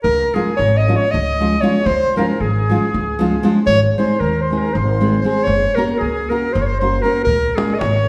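A clear, classical-style clarinet carries the melody from the opening, joined by a reedy, close-miked accordion second line and a dark, growly pizzicato upright bass in this festive, virtuosic Balkan wedding-band cut from a longer piece, racing at 232 BPM in 7/8 in Db major. A bright, fingerpicked nylon-string guitar joins just after, up front with the bass and clarinet, while the ensemble sits further back in a reverberant recital hall. A tight davul enters only at 7.3 s as the harmony returns to Db.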